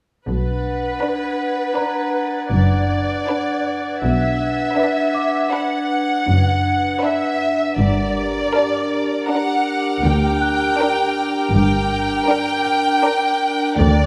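Uneasy and ominous, this cinematic excerpt in 5/4 sets a focused, vibrato-laden violin section melody up front over a glassy, ethereal glass harmonica holding slow-attack chords with a faint beating shimmer, while smooth cello and distant double bass sections anchor the low end. A clear second violin line enters at 1.0 s, a soft, high violin texture sits in the background, and a delicate, bell-like celesta joins at 1.8 s, close and dry against the lush scoring-stage reverb that bathes the strings. The harmony moves from Bm to Gm at 7.8 s, feeling like a fragment of a longer piece.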